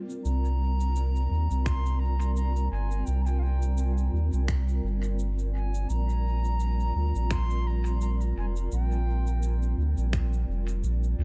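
A round, up-front dub sub bass anchors this spacious, deep ambient dub excerpt at 85 BPM with a light 16th-note swing, beneath a dark, blurred granular cloud pad holding C7(no3) then Bb6 chords, an airy, close-miked wooden flute melody and tape-toned cabasa and finger snaps both trailing dub echo, and a tight electronic kick that enters at 1.7 seconds.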